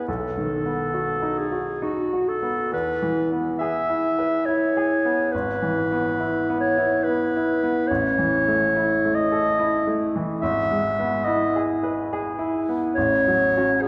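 Tender and lyrical, this short romantic classical excerpt in E major drifts at a rubato 70 BPM in 3/4, with a clear, up-front clarinet singing the melody between F#4 and E5 over a bright, brilliant grand piano accompaniment reaching down to G#1, both heard from further back in a concert hall with a 2.5-second reverb as the harmony moves from B7 through E, E/G#, A and back to E/G# before settling on F#m/A, all tuned to A4 = 436 Hz.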